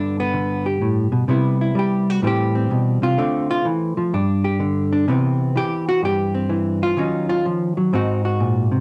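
A swung 4/4 pulse at 126 BPM, with the eighth notes lilting, carries this short piece of solo jazz in C major, cut from a longer performance and lasting just 8.8 seconds. A lone electric hollow-body jazz guitar plays throughout, fingered and sitting up front, its dark, clean tone given a compressed evenness and the soft grain of cassette tape. The harmony opens on G and moves through Cmaj7, Am7 and Dm7, returns to Cmaj7 after a G5, then slips sideways to Ebm7 and Ab9 near the close at 7.9 seconds. The guitar ranges from G2 to G4, staying in a mellow middle-low register. A small, reverberant room and the homespun cassette recording give the relaxed, sophisticated mood an intimate, lived-in feel.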